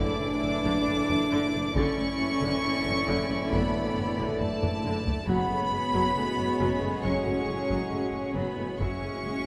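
Close, detailed and lightly reverberant, this tense, ominous suspense film-score excerpt sets a floating, sul tasto violin melody up front over a dark second violin line, viola accompaniment, cello and double bass, with sustained chords from a distant French horn section and a trombone section, a sawtooth-edged drone, a bright ringing Celtic harp, dry taiko drums with a fill at 4.4 seconds, and round soft-mallet timpani entering at 5.3 seconds as the harmony moves from Dsus2/F# to F#madd9.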